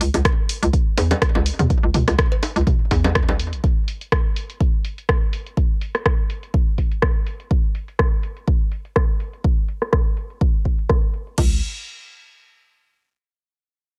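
A swung 124 BPM pulse in 4/4 drives this cool, clinical minimal techno excerpt in C# minor, where a deep electronic kick and an overdriven analog drum machine of crash, hi-hat and rim click, under a filter sweep, run to 11.5 seconds, tape-tinged electronic bongos, cowbell and toms with digital delay sound only until 3.4 seconds, and a hollow, bouncy FM bass with sidechain pumping knocks through the opening before returning briefly at 11.4 seconds, all dry and up front.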